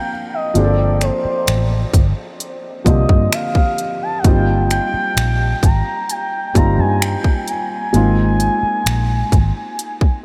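A slow, straight 65 BPM groove in 4/4 carries this smooth, tender contemporary R&B excerpt, where a gliding portamento lead with chorus, delay and vibrato sings a sustained melody over a felt-muted upright piano with audible action noise and thick felt, while a dark, foam-muted, punchy vintage electric bass and a crisp trap kit of finger snaps, hi-hat and hard-clipped kick enter at 0.6 seconds, all soaked in a dreamy, huge ambient reverb as the chords move from Bb69 through Gm11 and Eb6/G to Ab69.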